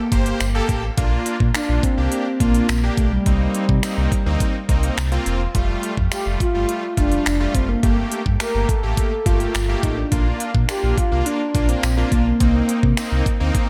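A barely audible downlifter and a mellow, horn-like synth lead open this summery, euphoric dance-pop excerpt in Bb major at 105 BPM, the lead's round, warbling, vintage tone carrying the melody through chorus and analog delay. From 0.1 s a fat, detuned sawtooth polysynth and a deep sine sub bass with an added octave both pump against the sidechain, while a layered electronic pop kit sets knocking kicks, crisp hats and finger snaps, joined at 0.4 s by a jingly tambourine sitting in the background. The chords cycle through Gmadd9, Bb, Cm7 and Fadd9, and a lush hall reverb soaks the mix in a dreamy haze.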